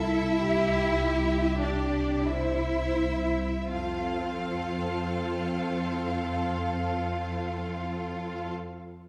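A tender, slow romantic movement for string orchestra in a rubato 3/4, cut from a longer piece, with the double basses standing up front, bowed with expressive vibrato beneath a lush, smooth violin melody and a clear, focused second violin line above it. Rich violas with portamento sit distant in the background while focused cellos fill out the low end, the rubato phrasing slowing through the opening over a C chord before settling onto F at 3.7 seconds. A wet recital-hall reverb wraps the ensemble in a warm glow.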